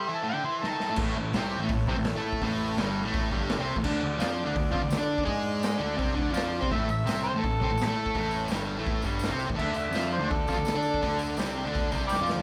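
A bright, double-tracked fuzz guitar sits up front in this rowdy, swaggering garage rock cut from a longer piece, playing a compressed, picked riff at 167 BPM in a straight 4/4. An overdriven harmonica opens alongside it and the reedy, vintage combo organ, whose sustained chords hover in the background with a light vibrato. The raw garage drum kit comes in with a fill at 0.6 seconds, its punchy kick, medium-tuned snare and dark cymbals sounding gritty and saturated in a small, pumping room. A warm, fuzzed electric bass then follows, and a jingly tambourine joins in the background at 4.2 seconds. At 6.7 seconds the harmonica returns for an amplified, overdriven solo full of tongue slaps, scooped notes and light vibrato, over chords moving from A to D5. The whole band plays live in one room with light reverb, giving the track a loose, rough-edged energy.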